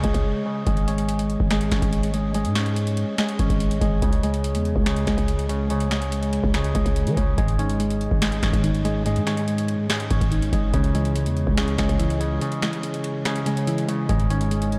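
Trap-style hip hop with a menacing, eerie mood and a half-time feel, cut from a longer piece. A bright, ringing Celtic harp plays fingerpicked arpeggios up front, colored by a low-pass filter and analog delay, and a filter sweep runs through the first 7.4 seconds. Beneath it, a growling, buzzy 808-style bass with a fast attack and decaying tail holds down the low end, while a booming analog drum machine re-recorded in a large room punches forward with a deep kick, crisp snare, metallic hi-hats and finger snaps. At 7.4 seconds, soft, round electric-piano-like synth keys join as a mellow accompaniment, shaded by chorus and a low-pass filter. Brief breaks interrupt the groove, including one at 12.4 seconds, as the harmony moves between C#5, G#sus4 and C#m under light reverb.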